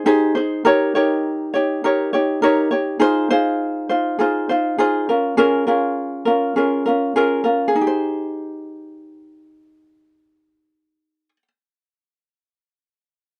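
A light, thumb-plucked acoustic ukulele sits up front as the only part, playing an accompaniment through a carefree, sunny pop groove in Ab major at 102 BPM in a straight 4/4. Its chords move from Abmaj7 through Eb7, Fm7 and Bbm7 before a new section returns to Abmaj7 at 7.7 seconds, with the passage cut from a longer piece. The sound is dry and close, in the manner of a 1970s studio, with a touch of light reverb on the ukulele.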